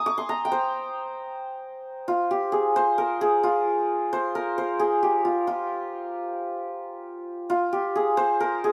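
In a straight 6/8 at 89 BPM counted in dotted quarters, this brief, hypnotic and soulful Persian passage in F avaz esfahan is carried by a solo hammered santur, bright and shimmering, ranging from F4 to Eb6. Its ringing acoustic tone sits up front, captured by close, detailed microphones with a touch of light reverb. A short opening idea gives way at 1.4 seconds to a new section that runs until the cut at 8.7 seconds, clearly lifted from a longer piece.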